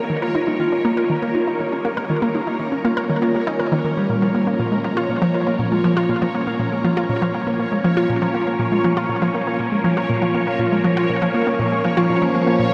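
A round, detuned analog pluck sits up front from 0.1 s, carrying a chorused and delayed riff through this hypnotic, mysterious stretch of sequencer-driven ambient space music at 120 BPM in Bb dorian, moving from Eb7 to Bbm at 4.1 s. Around it, a bright, swirling vintage string machine fades in with phased sustained chords, a ringing, thumb-plucked concert harp spins delayed arpeggios, and a resonant, bubbling filter texture fades in from the background on a held Db5. Everything floats in a vast, echoing cathedral reverb with a soft-topped sound, and the passage is cut from a longer piece.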